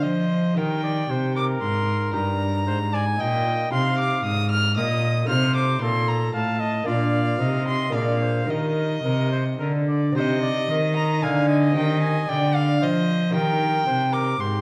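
In a straight, dance-like triple metre, this radiant baroque-style sonata movement with continuo, cut from a longer piece, sets a bright solo trumpet with light vibrato on the melody above a second line from a single warm, reedy, gut-string violin. A delicate fingerpicked lute with double, partly octave-doubled nylon strings supplies the accompaniment, while a close, rich bowed cello carries the bass. All four play throughout the 14.6 seconds, with violin and cello up front, in a dark production bathed in a wet recital-hall reverb, and the harmony turns toward the minor at 10.2 seconds.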